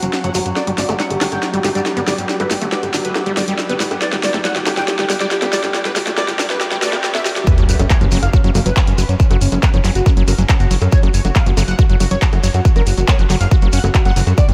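Psychedelic trance at 139 BPM in a straight 4/4, psychedelic and intense, where a bright, detuned sawtooth unison lead with vibrato, phaser and analog delay carries the melody over a fat, up-front analog bass, a squelchy, distorted acid bass riff sitting in the background with its filter sweeping through the build-up, a very quiet drone of moving overtones holding sustained chords until 7.5 seconds, cracking snare, handclaps, hi-hat and bongos from the drum kit, and a grainy, mellow shekere, all soaked in a dreamy cathedral reverb, until a drum fill and filter sweep give way at 7.5 seconds to a drop where a punchy electronic kick enters with a sub drop impact.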